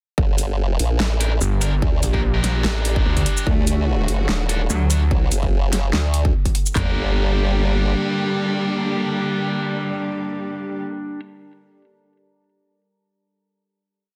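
A half-time 4/4 groove at 146 BPM, swung 54% on the sixteenths, drives this chaotic, aggressive heavy wobble dubstep piece in G harmonic minor. Two electronic kits share the beat: a big-room kit with a punchy kick, floor tom and handclaps, re-recorded in a small room, and a tape-toned dubstep kit with a huge snare, metallic closed hi-hats and shaker. Underneath, a formant-sweep wobble bass with chorus and overdrive plays modulated phrases with changing wobble speed, answered by a snarling, growling sawtooth bass of detuned unison voices that replies with chopped, distorted phrases. A bright, distorted electric guitar adds sparse echoing chord stabs through digital delay, while a deep, moody ambient pad with chorus and built-in reverb moves through slowly shifting chords at a very quiet level. At 3.5 seconds, as the harmony moves from Gm to D, a rich, smooth solo cello with vibrato begins a repeating riff melody and a distant, lush symphonic string section holds sustained chords with sidechain pumping, before the drop ends at 6.8 seconds and a final Gm chord rings out in a dense, heavily limited mix with little reverb.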